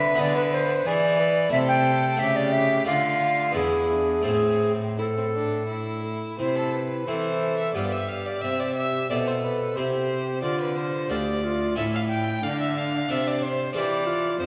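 An airy, wooden tenor recorder with a tongued chiff carries the melody over a rich, vibrato-laden solo violin second line, a brilliant plucked harpsichord and a clear, intense bowed cello bass in this grave yet flowing baroque-style sonata movement, a brief cut from a longer piece that moves in a rubato 3/4 at 83-93 BPM from A minor into C major at 6.4 seconds, all set in a wet concert-hall reverb.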